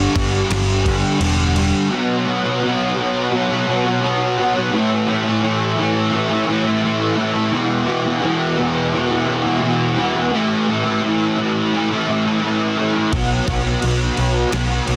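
A double-tracked fuzz guitar sits up front for the full 15 seconds, its distorted, chorus-thickened riff driving this dreamy, hazy shoegaze and dream pop excerpt through a shifting run of power chords. A dark, round hollow-body bass and a gritty, sampler-style drum kit with a thumpy kick and crash cymbal play only at the opening, drop out at 1.7 seconds, and return together at 13.1 seconds. Light digital ambience and a dense, heavily limited modern master give the track a compact, saturated sheen.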